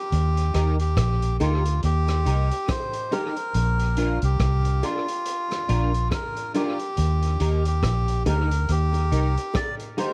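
Roots reggae at a laid-back, uplifting 70 BPM with a gentle sixteenth-note swing, cut from a longer piece, where a reedy, breathy melodica carries the melody through tape echo over a round, foam-muted electric bass sitting up front, a muffled vintage drum kit of hi-hat, tight kick and rim click soaked in dub echo, a clean hollow-body electric guitar accompaniment with analog chorus and tape echo entering at 0.5 seconds, and high-tuned bongos joining softly in the background at 1.4 seconds, all moving between Eb and Bb in a dark, small-room production flecked with vinyl crackle.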